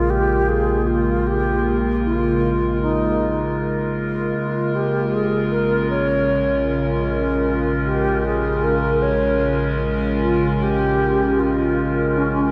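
A cavernous cathedral reverb with a 5.3-second tail surrounds this melancholic, spacious ambient excerpt in Bb dorian, moving at 77 BPM in a straight 4/4 over a single Bbm7 chord. A warbling, nostalgic tape-like pad sits up front, its detuned, lo-fi chords coloured by chorus and phaser. A pure, expressive wooden-headed alto flute carries the melody with vibrato and rolled-off highs through a diffuse ambient delay, while a deep, round sub bass holds Bb1 and fades out across the full 12.5 seconds.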